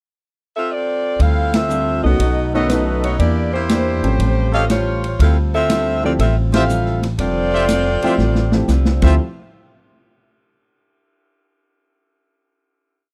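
A brassy, sultry big band swing piece in D minor at 120 BPM opens with the tight, up-front saxophone section playing a four-part block-voiced motif melody with light vibrato from 0.6 seconds, joined at 1.2 seconds by the woody upright bass in a two-feel, the boomy-kicked drum kit with backbeat and ride pattern, and a dark, old-stringed acoustic guitar strumming in four in the background, then by intimate grand piano comping in rootless voicings from 2.0 seconds and a clear, close-miked trumpet section adding syncopated stabs from 2.5 seconds, with band accents, a drum fill and a final hit in a dry, close 1970s-style small-room sound.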